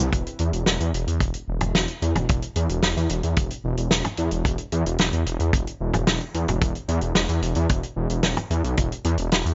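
Cinematic and nocturnal, this short synthwave passage moves in a steady, straight four-four pulse. A thick, lush detuned saw bass carries the low end with a fast attack and sustained, saturated tone, its chorus adding a shimmering width as it sits up front from the very start. A tight, dry acoustic kick enters at 0.1 seconds, joined by a soul drum kit of hi-hat, fat snare and toms, both mid-forward and close in the mix. The drums have a rounded, rolled-off top, and a small room reverb gives the whole a dark, intimate air with little high-end sparkle. Cut from a longer piece, the passage holds a single section, the kick dropping out at 8.9 seconds while bass and kit run on to the end.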